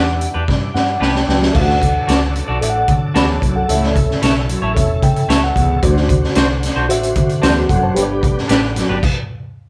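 A live-in-one-room sound with wet studio reverb carries this uplifting, danceable slice of uptempo 1960s-style soul at 112 BPM, where a gritty, boomy-kicked garage drum kit with a high-tuned snare sits up front, a dark, round hollow-body bass anchors the chords from Em7 through D, A, D7 and G, a worn, slightly out-of-tune reed electric piano with fast tremolo adds fills around 0.5 and 4.8 seconds, a twangy guitar at the edge of break-up plays stabs, a shouting tonewheel organ with slow rotary holds sustained chords in the background, and a breathy, intimate baritone saxophone enters at 1.3 seconds with a low riff before the band stops at 9.0 seconds.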